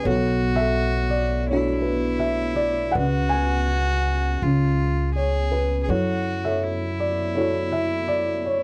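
Heartbroken and intimate, this short excerpt from an acoustic folk-pop ballad moves at an unhurried 82 BPM in a straight 4/4, set in F# minor. A felt-muted upright piano carries the melody across the full 8.6 seconds, its tone mellow, boxy and thickly padded, sitting up front in the mix. Alongside it, a single bowed cello plays a quiet second line high in its register, played sul tasto for a pure, floating sound with a soft attack. A pizzicato upright bass with steel strings enters at 0.1 seconds, adding a woody, growly thump down low. The harmony moves from Bm7 through C#7sus4 to F#m7, and the dry, close sound of a 1970s-style studio keeps the performance feeling near and personal.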